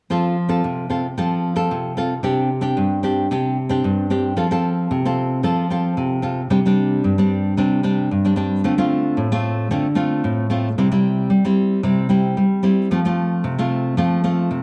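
A straight samba rhythm in 4/4 drives this festive, lively passage, cut from a longer piece, carried by a lone nylon-string guitar that is fingerpicked, up front and deep in classical tone, with finger squeaks audible along the strings. The guitar moves between F and Csus2 before a new section at 4.4 seconds brings in Dm7 and C on the way back to F. A generous large-studio reverb and a dark, warm production wrap the whole performance.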